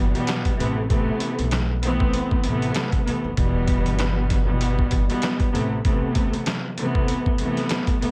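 Dry and close, this gritty, dark boom-bap hip-hop excerpt at 97 BPM with a swung 16th feel sets an up-front bowed studio string section, woody with vibrato, a smooth top and a cassette-tape tint, over Em and Amadd9 chords. A gut-strung pizzicato upright bass plays low until 5.8 s, while a muffled, pitched-down, compressed sampler-style drum kit with a thumpy kick, medium-tuned snare and hi-hat enters at 0.2 s, tape-warm and up front.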